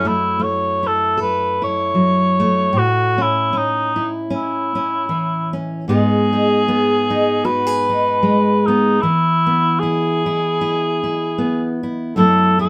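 A mellow cor anglais carries the melody in a classical style with light vibrato, its tone sounding roomy and slightly distant while still sitting up front. A full-bodied, fingerpicked dreadnought steel-string guitar accompanies throughout, moving through F#m7, A, G#m and E before returning to F#m7 at 12.2 seconds. This intimate, reflective acoustic folk piece in F# dorian moves at a relaxed 76 BPM with a gentle swing, and the small room adds a moderate reverb to this 12.7-second cut from a longer piece.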